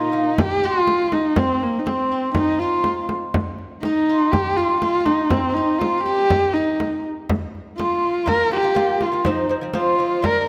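Close, detailed microphones capture this Mongolian folk excerpt in a moderate scoring-stage reverb, giving it a proud, vast character in a straight 4/4. A husky, boxy horsehead fiddle leads the melody up front, its single bowed voice on horsehair strings full of vibrato, portamento and soft, expressive attacks. A silvery steel-string zither, played with fingerpicks, rings out a second line beneath it throughout, while a deep, large frame drum struck with hard hands sits close and dry from 0.4 seconds onward. The delicate, fingerpicked lute, with gut and double strings, some doubled at the octave, briefly sounds its arpeggios at the very start and returns at 8.3 seconds as the harmony moves from an open, chordless opening to Bb5 and then F5. The passage is cut from a longer piece.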